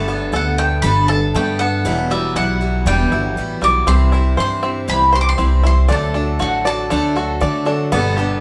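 The recording sounds like a band playing live together in one room, wrapped in a wet studio reverb with a short tail. This yearning, bittersweet folk piece moves at 118 BPM in a straight 4/4, with the chords moving through Gadd9, Emadd9, C and D. A pizzicato upright bass sits up front, woody, dark and growly. A twangy banjo played with fingerpicks spins bright, percussive arpeggios, while a boxy parlour steel-string guitar adds picked accompaniment with fresh strings and an audible finger squeak. The double-strung bowl-back mandolin carries a warm, picked melody from 0.4 to 7.6 seconds, as a very quiet, smooth, vintage upright piano with short sustain and a tight, very quiet classical brass section holding soft-attack chords with light vibrato fill in beneath, all in a passage cut from a longer piece.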